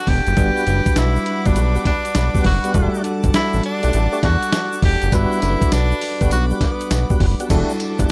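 A bright tenor saxophone carries the melody with light vibrato and scooped notes, riding over a bouncy, slick new jack swing groove built on a fat, sawtooth analog bass with a filter pluck and a gritty, compressed sampler-style drum kit with a thumpy kick, fat snare, hi-hat, crash and tambourine. A bell-like tine electric piano and lightly overdriven tonewheel organ stabs with chorus vibrato, slow rotary speaker and tape echo fill out the swung Gmaj7 to Em11 changes, while a soft, floating string section sits distant in the background beside a grainy tube shaker that enters at 0.3 seconds. This short cut from a longer piece has the saxophone stop at 7.2 seconds as the band plays on to the end.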